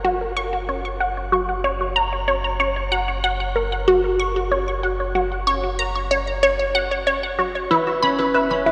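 A bright, squelchy blip pluck with a resonant filter and moving notch leads this cosmic, expansive ambient excerpt at 94 BPM, its riff coloured by phaser, delay and shimmer reverb. Beneath it a round sine sub bass fades in over an F# chord, and at 7.7 s a ringing, fingerpicked concert harp arrives with arpeggios over E5, carrying its own delay and shimmer. A cathedral reverb with a 5.3 s tail places the music in a vast, echoing space.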